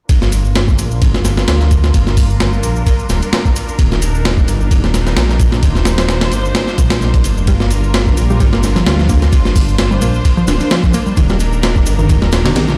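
Gritty, raw breakbeat at 130 BPM in G minor, cut from a longer piece, where a compressed, sampler-style drum kit with a thumpy kick and medium-tuned snare sits up front beside a thick, menacing detuned saw bass, the bass sharing filter sweeps with a rich, bowed string section that holds smooth sustained Gm7 and Ebmaj7 chords through sidechain pumping and a low-pass filter, while a tape-warm shaker stays in the background and a dark, round picked electric bass with 12-bit sampler grit and digital delay enters at 7.5 seconds, all heard as if blasted through a big sound system in a bare stone room.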